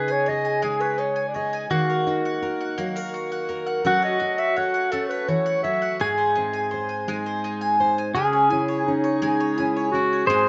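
Intimate and reflective, this short piece of acoustic folk sways in an unhurried 3/4 for a duo or small band, cut from a longer piece. A mellow, classical-style clarinet carries the melody up front, taking a solo from 0.0 to 8.1 seconds with a distant, roomy tone. Beneath it, a bright, twangy pedal steel guitar, played clean with fingerpicks and slide and compressed, traces a second line. A full-bodied fingerpicked jumbo acoustic guitar holds the accompaniment, while a woody, double-strung mandolin sits forward with picked arpeggios touched by slapback echo. The harmony moves from C#sus2 through D#m, F#m and G# before settling on C#m as a new section begins at 8.1 seconds. A lush hall reverb wraps the rough home-demo mix, whose dull, rolled-off top end adds to the close, private feel.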